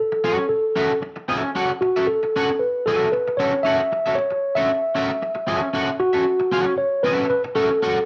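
A clean tine electric piano, heard through its built-in speakers and bathed in plate reverb, carries the melody up front over a single F#m7 chord in this driving, cool funk fragment at 115 BPM in F# minor, while a twangy, picked electric guitar at the edge of break-up plays a slightly gritty accompaniment through analog chorus and plate reverb, all set in a dark, warm mix with a wet club reverb and a short tail.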